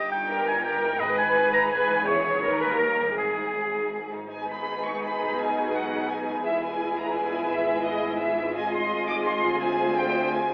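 Classical excerpt in G# minor, stormy and restless at 169 BPM in a rubato 3/4, with an intense, up-front symphonic violin section carrying the melody over a clear oboe that shares a second line with the expressive chamber violins until 3.9 seconds, smooth violas, lush cellos and double basses in the background, a ringing thumb-plucked harp playing arpeggios, a very quiet round timpani stroke at 1.0 seconds, and a mellow French horn section adding sustained chords from 4.3 seconds, all set in a wet recital hall reverb with a telephone-like sound.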